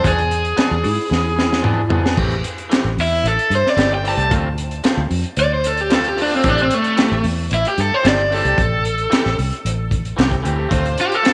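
Straight-eighth soul blues in A minor at 112 BPM, mournful and soulful, cut from a longer piece, with a crunchy, saturated breakbeat kit and a round, foam-muted fingered bass sitting up front while a twangy, lo-fi guitar through a small old amp adds stabs over an opening E7b9. A clean lap steel with volume swells drifts in the background, and after a drum fill the compressed, overdriven lead guitar with spring reverb takes a solo from 2.2 s over Am7 and Dm7 changes. A rich studio string section with light vibrato enters with sustained chords at 10.7 s, all in a light studio reverb.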